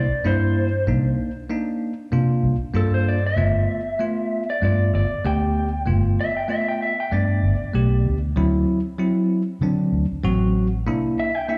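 Heard live through a club's PA, this short cut from a longer performance carries the room's light reverb, with every part sitting up front. It is a straight-eighth soul blues with a rollicking yet laid-back feel and a gentle swing in the sixteenths. An electric guitar through a small old amp carries the melody in a dark, slightly broken-up, compressed lo-fi tone, picked and coloured by spring reverb and slapback echo. Beneath it, a bell-like tine electric piano plays bright, clean accompaniment through its built-in speakers, also touched by slapback echo. A vintage muted, fingered electric bass gives a round, amped, foam-muted low end before dropping out at 11.1 s. The harmony moves from C9 through Cm7 to G9, then D9, and returns to C9 near the end.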